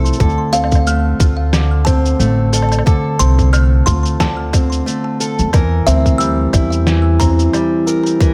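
A fingerpicked acoustic archtop guitar opens with dark, boxy arpeggios touched by digital delay and finger squeak, beside a thumpy, woody pizzicato upright bass, then a tight, tape-warm electronic kick and muffled, pitched-down sampler cabasa, woodblock and snare settle into a swung 90 BPM folktronica groove as a close-miked, thumbnail-plucked kalimba adds a delayed second line from 0.5 seconds, moving from Dm7 to C7 in a delicate, hopeful excerpt cut from a longer piece, with studio reverb and a faint mains hum.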